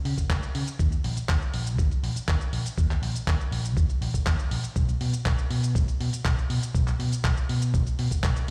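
A straight 4/4 groove drives this groovy, sensual nu-disco passage, cut from a longer piece, built on a compressed, thumpy electronic kick drum and a dusty soul sampler-style kit of handclaps, hi-hat and shaker, both gritty, tape-warm and re-recorded in a large room. A warm, amped picked electric bass with sidechain pumping sits beneath them across the whole stretch. The sound is nearly dry, yet it carries the stony ring of a big sound system playing in a bare room.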